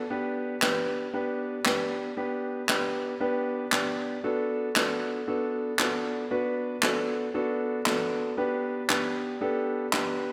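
A dark concert grand piano opens this energetic, bittersweet dance-pop excerpt, playing accompaniment in a mellow, intimate voice with deep bass and audible action noise, set up front in the mix. At 0.6 seconds, handclaps and a medium-tuned snare drum played with brushes join, sounding acoustic and natural in a studio room and also placed up front. The piece moves at 116 BPM in a straight 4/4, with the harmony shifting from G to Bm7 and returning to G. A lush hall reverb and a small room reverb lend the whole a big arena sound, while the piano keeps a smooth, vintage character. The passage runs to 10.3 seconds and is cut from a longer piece.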